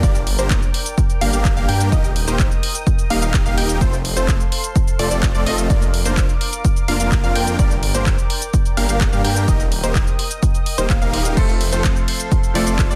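Festival progressive house at 127 BPM in a straight 4/4, this excerpt from a longer piece sounds triumphant and anthemic, moving through a Gm, Eb, F and Bb/F progression in F mixolydian. A punchy, up-front electronic kick drives the track alongside a tape-warm house kit of crash and ride cymbals, handclaps, hats and shaker. Huge, bright supersaw chords carry the riff with a sub octave and digital delay, while a thick, menacing detuned saw bass sits beneath with a saturated, beating edge. In the background, a wave-folded unison pluck spins decaying arpeggios through delay, and a warbling, vintage pad with chorus holds slow-attack sustained chords. The bass, pad, pluck, supersaws and piano all pump against the sidechain, and a brilliant grand piano joins at 11.4 seconds with delayed accompaniment. The dense, heavily limited modern master is set in a digital ambience.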